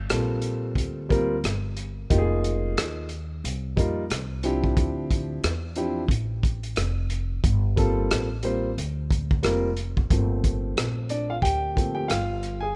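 A swung 4/4 groove of tight kick, hi-hat and rim click on a crunchy, saturated breakbeat kit with vintage 12-bit sampler grit drives this nocturnal, smoky jazz-hop fragment, while a woody pizzicato upright bass and a smooth, vintage grand piano sit up front in a dry, rough home-demo mix over Gm11, Fm11 and Dm11 chords, the piano taking a solo from 10.1 seconds.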